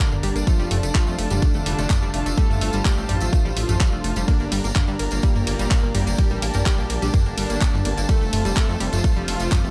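A steady, straight 4/4 pulse at 126 BPM drives this hypnotic melodic techno excerpt in G minor, anchored by a punchy, up-front electronic kick that enters at 0.5 seconds, with a layered, tape-tinged house kit of handclaps, hi-hat, ride cymbal and toms re-recorded in a large room, and a jingly, distant tambourine. Beneath them, a menacing detuned saw bass with a saturated, evolving filter swell pumps against the kick, while a round analog pluck spins arpeggios through chorus and digital delay. A smooth, full-bodied soft supersaw carries the melody from the background with dub echo trailing it, and a bowed studio string section holds vibrato-laden sustained chords behind it. An airy, breathy pad with a slow attack and long release adds a mellow, ring-modulated haze, all of the pitched parts breathing with sidechain pumping. The harmony moves from Dm/F to Gm at 4.3 seconds and on to F at 8.1 seconds, in a dry mix with little reverb that keeps the groove driving.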